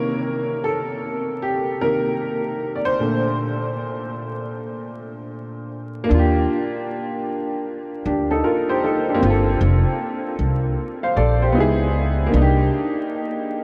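Swung sixteenths at a relaxed 77 BPM in 4/4 carry this melancholic, hazy lo-fi hip hop excerpt in C dorian, opening with a clear, worn upright piano alone, slightly detuned and colored by cassette tape, moving from Cm7 to Bbmaj9. At 6.1 seconds a woody, pizzicato upright bass with steel strings joins up front under Ebmaj9, Gm11 and a brief Dbm7, then drops out at 12.7 seconds as the piano rings on to 13.6 seconds, returning to Cm7. The dreamy mix is soaked in a huge, wet ambient reverb and dusted with vinyl crackle.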